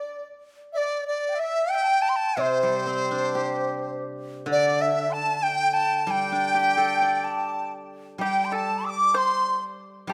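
Chinese traditional chamber music, festive and graceful, moves in a free rubato at 64 BPM in D shang mode: a pure, buzzing bamboo dizi sings the melody up front with vibrato and crisp, chiffy attacks over a second, airy, straight-toned dizi set in the background, while a mellow, silvery steel-string zither rings in under the pair from 2.4 s and a dry, percussive pipa returns at 8.2 s, the ensemble bathed in moderate concert hall reverb in this brief cut from a longer piece.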